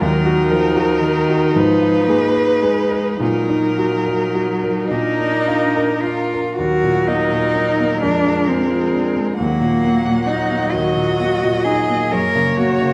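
A slow, rubato 6/8 pulse, counted in dotted quarters at roughly 34-45 BPM, gives this Eb minor passage for piano quartet its melancholic, solemn sway. The violin carries the melody with vibrato and expressive portamento, sounding somewhat distant, while the cello, placed up front, sings a second line with soft attacks and its own sliding, rich vibrato. The viola fills in the accompaniment with a smooth, even tone heard close by, and the baby grand piano adds warm, present accompaniment spanning a broad register. All four play together from start to finish of this 12.9-second fragment of a longer movement, which moves from a first section into a second at 6.6 s before settling onto a Gb chord near the close. A wet scoring-stage reverb and a dark production lend the ensemble a shadowed, spacious glow.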